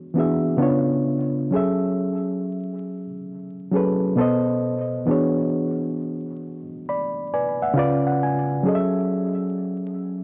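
A reedy, worn electric piano, slightly out of tune and sitting up front through its built-in speakers, plays alone for the full 10.2 seconds of this dreamy, nostalgic hip hop fragment, swinging gently in 4/4 through lush E13, C#7b9, F#m7 and B7b9 changes, its tone dulled by a low-pass filter and trailed by tape echo in a dry, gritty recording dusted with vinyl crackle.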